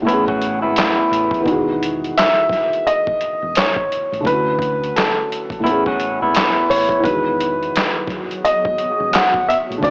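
Lo-fi hip hop at 86 BPM in E major with a swung, nostalgic and dreamy feel, this short cut from a longer piece rides a gritty, pitched-down sampler drum kit of thumpy kick, snare, hi-hat and handclaps up front, a round dub bass sitting in the background, and a felt-muted upright piano whose thick felt and audible action noise give the chords a muffled intimacy. A dark, slightly broken-up electric guitar with tape echo plays brief phrases from 0.1 to 1.4 and 5.6 to 7.0 seconds, while a woody, smooth upright piano carries the melody from 2.2 seconds over Amaj9, Emaj9 and Dmaj9 harmony. A cloudy granular pad with its own reverb blooms in at 8.0 seconds, and the whole mix sounds worn and warbly, like a cassette drifting in pitch through a small speaker.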